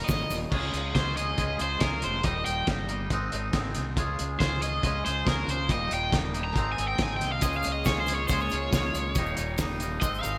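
Carefree and upbeat, this indie rock excerpt rides a bright 1980s-style digital sheen and lush hall reverb, with an up-front, overdriven stack guitar soloing over a clean, scooped, twangy guitar riff, a round, punchy fuzz bass, and a muffled, thuddy, cloth-damped drum kit with a fat snare and gated reverb, while a very quiet, vintage organ-string ensemble and a grainy egg shaker briefly sound at the start and return at 7.4 seconds.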